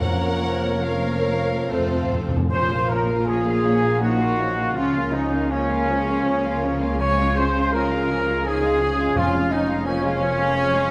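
A clear, up-front trumpet section punctuates this elegiac, yearning orchestral excerpt in three, entering with stabs at 2.5 s. Before that, a very quiet bassoon and trombone section sound only until 2.2 s, while close, dry timpani struck with hard mallets add a fill. Lush bowed violins carry the rubato melody with vibrato, joined by a second violin line, a hollow, airy flute and a distant clarinet, all over expressive violas, mellow French horn chords, a softly ringing harp, warm cellos and woody double basses, in a reverberant recital hall, with the timpani returning at 9.2 s.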